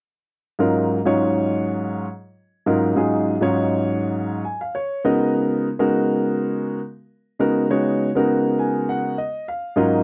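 A warm baby grand piano opens this soaring, slick jazz passage, sounding open and up front with long sustain as it voices a suspended thirteenth chord on Ab before moving to one on Db at 5.0 seconds. Over a swung feel, the piano breaks into fills at 4.1 seconds and again from 8.3 seconds to the cut at 10.0 seconds. The sound is dry and close, in the manner of a 1970s studio recording, touched by light reverb.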